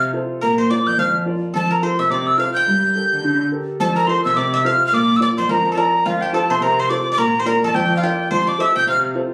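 A breathy metal whistle, a bright koto and a clear upright piano start together, with a dark bowed cello joining at 0.4 seconds in this wild, driving Celtic reel. The tune sits at 213 BPM in 4/4 with a swung eighth-note feel, and the instruments are tuned to A4 = 436 Hz. The whistle leads up front with vibrato and a crisp, chiffy attack, while the koto, played with fingerpicks, carries a dry, woody second line beneath it. The worn, slightly detuned piano gives a boxy accompaniment with long sustain, and the single cellist plays an expressive bass with a soft attack, portamento and a smooth top. The same section is heard twice, the second pass starting at 3.8 seconds, moving mostly between Bb and F with a passing Gmadd9. Captured on a phone in a room with club-like reverb, this is a cut from a longer piece.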